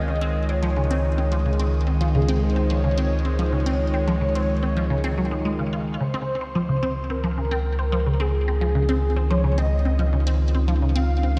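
A straight 4/4 pulse at 109 BPM drives this cut from a longer piece of ambient, sequencer-driven space music in Db major, luminous and cosmic in mood. Up front, a squelchy, juicy blip pluck with a fast attack and short decay plays a riff from 0.1 s, ringing through phaser, subtle chorus, shimmer reverb and delay, while a round sine sub bass holds a deep Db underneath. A swirling, detuned sawtooth pad sustains an opening Dbadd9 chord through phaser, chorus and shimmer reverb, and a fade-in lifts it from 6.0 s as the second section begins. Above it, a breathy, flute-like lead carries the melody with tremolo, vibrato and ensemble chorus, trailing shimmer reverb and delay. A very quiet, airy, wind-like texture hovers in the background until 6.0 s. The concert hall reverb is wet, with a 2.5-second decay, and the production is dark and warm.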